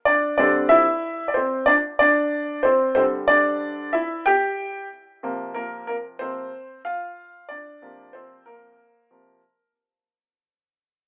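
Nocturnal and smoky, this brief hip hop fragment at 93 BPM with a swung 16th-note feel features a solo upright piano, woody and intimate with audible action noise and slapback echo, sitting up front as it moves from D9sus4 to C9sus4 at 5.2 seconds, all in a rough home-demo mix with telephone-like sound, light small-room reverb and a fade-out across the whole piece.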